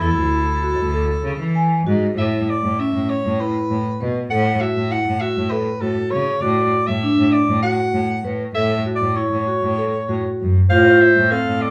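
This contemporary instrumental chamber piece, cut from a longer work, moves in a straight 7/8 at 197 BPM counted in eighths, its A major setting feeling shimmering and hopeful. A breathy soprano saxophone carries the melody throughout in a jazz style with light vibrato, sounding roomy and solo. Alongside it, a vibraphone played with medium mallets and the motor off spins metallic, ringing arpeggios, while a rich, focused bowed cello with vibrato holds the bass line. A smooth-topped clarinet in classical style adds a second line at the opening, falls away at 1.9 seconds, and returns at 10.7 seconds as the harmony turns to Fmaj7. Along the way the chords pass from E9sus4 through C#m7/A, A6 and a rootless Bm7/A to A, all framed by a moderate studio reverb.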